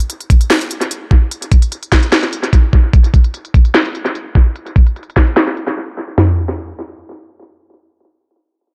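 A half-time trap beat at 148 BPM in 4/4 drives this brooding, melancholic hip hop clip, its up-front, tape-warm electronic kit of knocking kick, sharp snare, crisp hi-hats, handclaps and toms carrying an analog delay through an echo-heavy, low-pass-filtered mix with light reverb, while a filter sweep runs until 6.2 seconds, a break arrives at 5.8 seconds, and the drums stop at 6.3 seconds.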